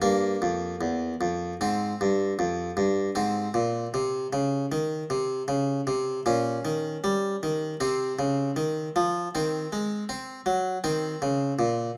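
Grave and solemn, this baroque-style suite movement for solo harpsichord moves at 78 BPM in 4/4 with a free, rubato feel, its bright, plucked Italian-style instrument on a single set of strings sitting up front in close, detailed sound within a large studio's moderate reverb, ranging from E2 to Db4 through dark diminished and minor harmonies such as Edim, Fm, Cmadd11 and Bbmadd9 in this 12-second excerpt cut from a longer piece.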